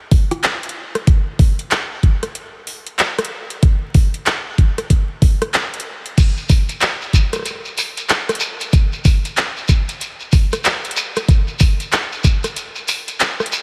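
A knocking, tape-warm electronic kick drum sits up front in this funky, playful glitch hop excerpt at 94 BPM with a swung sixteenth-note feel, alongside a layered dubstep drum kit of crash cymbal, handclaps, metallic hi-hats and rim clicks, while a grainy, mellow shekere enters at 6.2 seconds, the kick drops out at 12.4 seconds, and a light reverb, digital ambience and vinyl crackle frame the whole groove.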